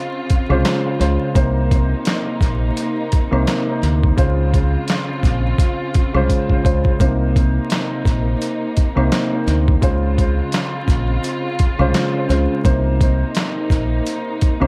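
Gritty, pitched-down sampler drums drive this tough, reflective boom-bap hip-hop excerpt, with a thumpy kick, handclaps, hi-hat and a medium-tuned snare sent through dub echo, plus a fill at 6.3 seconds. A round, deep fingered electric bass sits up front beside a mellow, worn baby grand piano that also carries dub echo, while a lush bowed string section sustains Dbmaj7 and Cm7 chords with woody vibrato. A very quiet tube shaker and woodblock add texture beneath the swung groove, and the whole echo-heavy mix is dusted with vinyl crackle and small-room ambience.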